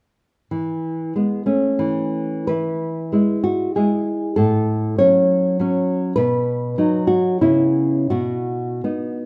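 A tender, nostalgic romantic piece for solo nylon-string guitar, heard up front from 0.5 seconds, with a warm, thumb-plucked classical tone, unfolds in a rubato three-four lilt through E, A, F#m/A, B and C#m7 harmonies, its opening phrase giving way to a new section at 2.5 seconds before this excerpt from a longer work breaks off at 9.3 seconds, all set in a moderate recital hall reverb.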